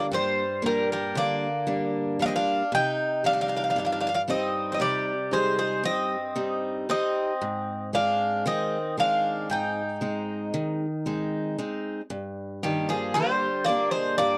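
This dry, close recording has the character of a 1970s studio session, with a light touch of reverb around its three acoustic instruments. It is a reflective, melancholic Greek folk piece for a bouzouki band, moving in 9/8 at 115 eighth-note beats per minute with a straight feel, in G phrygian. Up front, one Greek bouzouki carries the melody between G4 and G5, its picked double strings metallic and partly octave-doubled. A second bouzouki plays a lower line from Eb3 to Eb4, sharing the same doubled-string sound but sitting a little further back. A picked steel-string parlour guitar, also close, supplies the accompaniment from G2 to Eb4, with finger squeak audible on its strings. The harmony moves from Gm to Cm and then Ab, and a new section begins at 12.1 seconds as the chords return to Gm, with all three parts playing until the passage is cut at 14.4 seconds.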